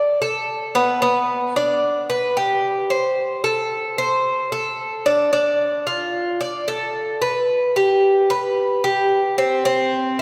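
A long, wet church reverb surrounds this short Latin fragment, giving the notes a lingering tail in a large, resonant room. The only instrument is an acoustic Cuban tres, heard alone from 0.0 to 10.2 seconds and placed up front against that spacious ambience. Its picked double strings ring with a metallic edge, and some of the courses are octave-doubled, which thickens each note. The tres moves between B3 and D5 in a straight, steady 4/4. The mood is warm and danceable, like a brief glimpse taken from a longer piece.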